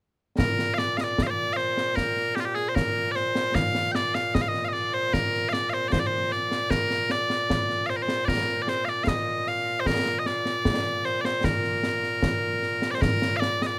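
Bright, piercing bagpipes lead this stirring, proud piece of Scottish pipe music, carrying the melody up front from 0.4 seconds to 13.8 seconds in a continuous solo line. The tune sits in Bb major at 76 BPM in 2/4 with a straight feel, and the pipes range from Bb2 up to G5. Beneath them, concert snare drum and concert bass drum play throughout the same span, with an acoustic, small-room sound and dark cymbals. Light reverb gives the whole a sense of space, and the piece is cut from a longer performance.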